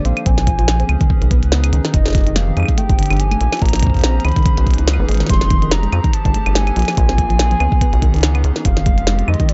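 A swung 4/4 groove of deep electronic kick and a glitchy kit of claves, clicky hats and tiny snare drives this eerie, nostalgic IDM excerpt, where a rubbery, nasal square bass sits up front beneath a warbling tape-like pad with sidechain pumping, dusty detuned pluck arpeggios through cassette tape and tape echo, and a soft-attack lead melody with vibrato and dub echo, all over cycling minor ninth chords in a dark, dry mix.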